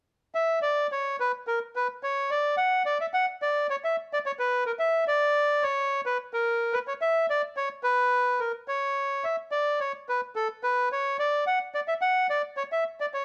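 Passionate and tense, this short tango excerpt features a lone bandoneon, reedy and vintage in tone with a band-limited, up-front presence, playing freely in rubato from 0.3 seconds to the close at 13.2 seconds. A light reverb surrounds the instrument, and its line stays in a compact upper-middle register, giving the fragment the feel of a moment lifted from a longer piece.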